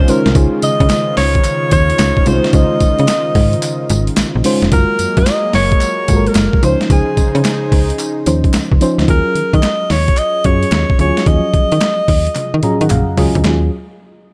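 A dry, close-sounding cut from a longer new jack swing R&B track, bouncy and confident with a swung sixteenth-note feel. A gritty, overdriven sampler-style drum kit with a thumpy kick and high-tuned snare sits up front beside a snappy, metallic FM slap bass. A mellow, warbling FM electric piano with chorus and tremolo and a smooth, detuned analog pad in the background carry the chords, and a very quiet group handclap enters at 0.9 seconds, while a jazz-style alto saxophone sings the melody with vibrato; the pad drops out at 9.1 seconds, and drum and electric piano fills close the passage from 12.4 seconds.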